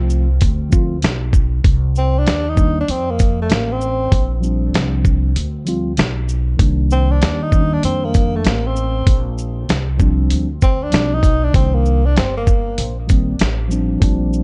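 Nocturnal and cool, this jazz-hop cut rolls along at 97 BPM in 4/4 with a 64% swing on the sixteenths, sitting in C dorian and drifting between Cm7 and Bb69 after an opening rootless Bbmaj9. A breathy tenor saxophone carries the melody from the start, its subtone, vibrato and scooped notes treated with analog delay, and from 1.6 seconds it takes a jazz-style solo until it drops out at 12.9 seconds. Beneath it, a mellow tine electric piano plays clean, direct accompaniment, while a woody pizzicato upright bass with steel strings sits up front in a low register. A dusty, sampler-style drum kit enters at 0.1 seconds with a thumpy kick, medium-tuned snare, hi-hat and shaker, sounding compressed, gritty and forward. Digital ambience wraps the whole in a dark, warm production with its top end rolled off, and the passage is cut from a longer piece.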